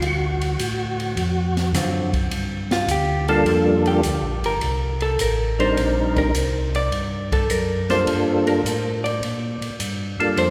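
A percussive tonewheel organ carries the melody in this bluesy, smoky soul jazz organ trio, its round, clean tone sharpened by third harmonic percussion and colored by chorus vibrato and a slow rotary speaker. A second, mellow tonewheel organ holds down the bass line up front with a dark sound, also treated with chorus vibrato and slow rotary. An acoustic jazz drum kit swings the eighth notes in 4/4 on hi-hat, ride and snare, with dusky cymbals, a high-tuned snare and a boomy kick that sound as if captured in a small room. A vintage hollow-body electric guitar enters at 1.7 seconds and takes a solo from 2.3 seconds, its picked, compressed tone staying clean and warm. The harmony opens on a tense D7#9 before settling into a Gm7 and Cm7 vamp, and a wet church reverb with a long 2.8-second tail surrounds this fragment cut from a longer piece.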